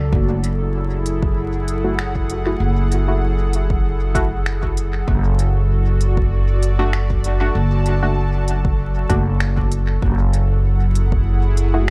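Ambient dub with a hazy, spacious mood, this fragment of a longer piece rides a lightly swung groove through an echo-heavy mix dusted with vinyl crackle. A woody, pizzicato upright bass sits up front with tube saturation, while an overdriven electronic kick thuds deep in the background and an overdriven electronic kit adds finger snaps and smooth hi-hats through dub echo. An airy, breathy pad holds sustained chords with chorus, and from 1.8 seconds a muted, filtered dub chord stab with a plucky, decaying sawtooth tone drifts in on its own chorus and dub echo.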